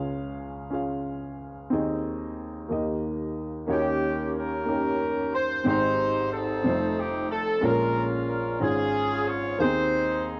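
A mellow, tight pop-style horn section carries the melody in this uplifting gospel piece, entering at 3.7 seconds and singing in a hopeful, roomy voice through to the end at 10.4 seconds. Before the horns arrive, a woody upright piano sets the scene alone, laying down accompaniment that spans from deep bass notes to the upper middle of the keyboard. The music moves in an unhurried 6/8 with a straight feel. Once the horns join, the harmony grows richer, passing through seventh chords before settling back toward home, all in a spirit of quiet optimism. The sound is dry and close, like a small-room studio recording from the 1970s, with both the piano and the horns placed up front. This short passage is cut from a longer piece.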